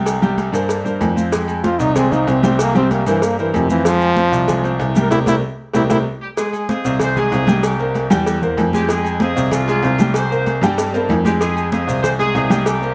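Over a brisk 190 BPM salsa groove in F harmonic minor, high-tuned congas, a tight cowbell, ringing agogo bells and timbales, and grainy maracas drive a fiery excerpt cut from a longer piece, where a woody upright piano comps and a worn grand piano holds the low bass line up front while a punchy trombone solo with light vibrato leads from 1.6 seconds until a tight, vintage horn section takes the melody at 6.2 seconds, with a drum fill and band accent marking the turn between sections.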